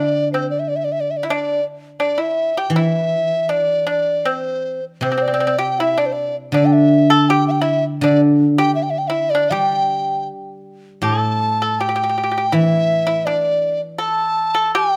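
Heard through close, detailed microphones in a moderate recital-hall reverb, this short cut from a longer Chinese traditional chamber piece has a pastoral, graceful mood and a loose, rubato feel over a 2/4 metre. A large dizi carries the melody up front, its bamboo tone airy and hollow, with a buzzing membrane, a crisp attack and a straight, mellow sound. Beneath it the pipa plays a second line in a middle register, picked with fingerpicks for a dry, percussive edge. The guzheng, also up front and played with fingerpicks, supplies low accompaniment with a ringing, silvery shimmer. The music moves into a new section at 11.0 seconds, and the guzheng drops out at 14.7 seconds, just before the dizi and pipa finish at 15.0 seconds.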